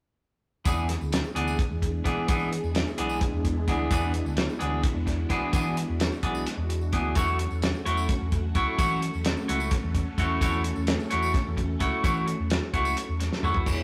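Heard through a rough rehearsal-room recording with moderate stone-room reverb, this hazy, hypnotic psychedelic rock excerpt in 7/8 sets a bright, clean twangy electric guitar riff up front over mellow, vintage string-machine violas with ensemble chorus, a round, punchy fingered bass, a cloth-damped thuddy drum kit with dark cymbals and a fat snare, and a jingly tambourine in the background, moving from E7 to F#m at 7.2 seconds before a drum fill at 13.3 seconds.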